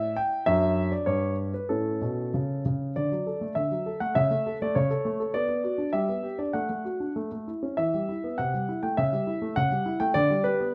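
A warm concert grand piano opens this cheerful, elegant classical-period sonatina in D major, playing solo at 100 BPM in 2/4 with a gently rubato feel. Its deep bass and long sustain sit up front under close, detailed microphones and light reverb, spanning F#2 to G5 as the harmony moves from D/F# toward A before a second section begins at 3.0 seconds. That passage wanders through Bm, G and Em, touches Am7/C and A7/C#, and settles on G/D as this brief cut from a longer piece ends at 10.7 seconds.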